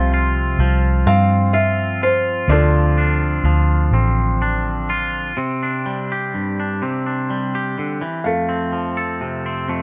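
Acoustic folk-pop ballad in a slow 6/8 at 42 BPM, with an intimate, hopeful mood, moving from Csus4 and Dm7 to Csus2 and F. A soft, mellow felt-muted upright piano carries the melody with audible action noise, while a bright, clean, twangy electric guitar plays compressed picked accompaniment up front. A dark, round, foam-muted vintage electric bass adds punchy low notes until 5.3 seconds, all under light reverb in this brief excerpt from a longer piece.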